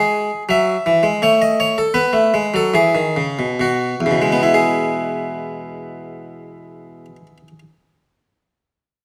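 Classical baroque-style suite movement in E major and 3/4, serene and dance-like, heard as an excerpt in which a solo Flemish-style harpsichord with one set of strings plays with rubato between 61 and 85 BPM, slowing through the opening 4.5 seconds, its round, plucked tone sitting up front in close, detailed sound within a moderate stone room reverb until it falls silent at 7.6 seconds.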